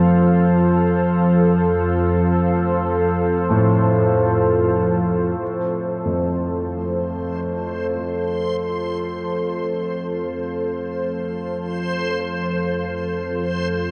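A deep, moody pad holds sustained chords in F major over a detuned, organ-like drone, both softened by chorus and sitting in a huge, wet reverb that gives this dark ambient drone in free time an ominous, brooding air. At 3.5 seconds a concert grand piano enters with low, open arpeggios in its deep bass register, trailed by delay, and from 5.4 seconds the drone gradually fades in further. From 6.3 seconds a faint, bright reversed texture with a granular, dreamy quality hovers high above the mellow, dark mix.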